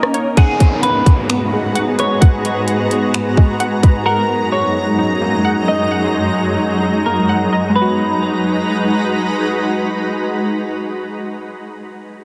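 A shimmering, ethereal pad, a glassy, crystalline wavetable pluck arpeggio set in the background, and a dark, clean semi-hollow guitar melody with chorus and delay open this melancholic, hazy cloud-rap excerpt at 130 BPM in a half-time feel in G# minor. Up-front trap drums with a hard-clipped kick, metallic hats, finger snaps and rim clicks drive the opening over a G#m7 chord, with a quiet downlifter entering at 0.4 seconds, until the drums stop at 3.9 seconds. The guitar drops out at 9.1 seconds, leaving the pad and pluck in a lightly reverberant, heavily compressed, radio-like sound.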